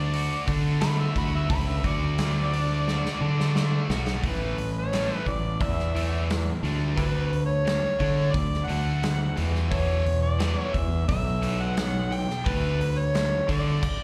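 Swaggering and gritty, this classic rock excerpt at 88 BPM in a straight 4/4 opens with an overdriven, amplified harmonica soloing over a bright, double-tracked distorted guitar riff, a round, fuzzy fingered bass sitting up front and a big-room drum kit with a punchy kick, with a drum fill from 2.9 to 4.2 seconds leading into a section moving through A5, D and E5 chords before everything but the harmonica and drums stops at 13.8 seconds, all heard as a live club gig through the venue's PA.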